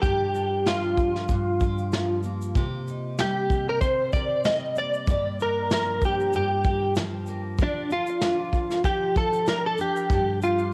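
Acoustic pop with a tender, reflective mood, this short passage, cut from a longer piece, moves at an easy, lightly swung pace in four. A clean, direct-recorded electric guitar carries the melody up front, its picked tone compressed and scooped, coloured by ensemble chorus, tape echo and cassette tape. Beneath it, a double-tracked, picked steel-string jumbo acoustic guitar supplies full-bodied accompaniment, with audible finger squeak and its own cassette tape character. A vintage brush kit also sits up front, with a punchy kick, medium-tuned snare and shaker, and its rolled-off top and pumping small-room sound give it a warm, homespun feel. The recording carries a small-room reverb and a home-cassette quality, while the harmony moves from Gm7 through Cm7 and Dm/F before landing on G5.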